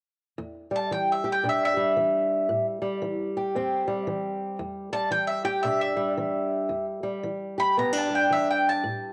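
Acoustic country blues in E minor, this short cut from a longer piece moves at 114 BPM in 4/4 with a swung eighth-note feel, and its mood is soulful and mournful. A fingerpicked old ladder-braced acoustic guitar enters at 0.4 seconds as accompaniment, its dark, woody, boxy tone and old strings sitting up front in the low and middle register. The mandolin joins at 0.8 seconds to carry the melody high above, its picked double strings giving a round, up-front voice. The harmony moves from Em7 to Am7 and back to Em7, with both parts playing through to 9.1 seconds. Light reverb and a small room ambience frame this home recording, and the cassette tape colors both instruments.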